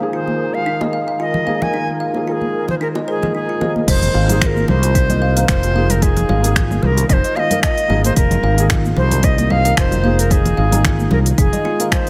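This organic downtempo excerpt in F minor pentatonic moves at 112 BPM in 4/4 with a gentle 16th-note swing, and its mood is mystical and warm. A reedy, bright cedar flute with vibrato and a soft attack carries the melody over a Fm7 chord, with delay trailing its phrases. Beneath it, a woody, ringing kalimba plays delayed arpeggios, and a felt-muted upright piano sits dark and intimate in the background with sidechain pumping and delay. An airy, detuned pad holds very quiet sustained chords, while a wind-like tuned noise texture breathes underneath until 3.9 s. Soft-handed congas and bongos enter in the background at 0.3 s, and at 3.9 s a growly fretless bass with tube saturation comes up front, joined by a soft electronic kick and an organic electronic kit with crisp hats, crash, finger snaps and shaker. Light reverb and digital ambience surround the whole.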